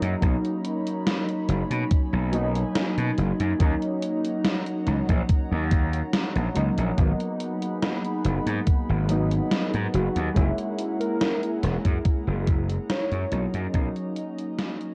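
Through a worn, warbling cassette haze with its top end dulled, this dreamy, nostalgic vaporwave excerpt drifts at 71 BPM in B major, as detuned lo-fi synth keys with lush chorus and tape echo and a mellow phased pad sit over a gritty, overdriven slap bass, a thumpy electronic kick and an 80s drum machine's gated snare and hi-hat, while a velvety synth lead with vibrato enters at 9.9 seconds before the music fades out from 11.5 seconds.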